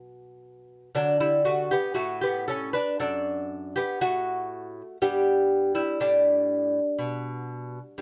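A dry recording puts a delicate, fingerpicked solo lute up front, its nylon double strings and some octave-doubled courses ringing through a radiant, flowing baroque-style classical dance in D major at a rubato 60 BPM in 4/4, moving from B5 to D and then to G at 5.0 seconds in this short cut from a longer piece.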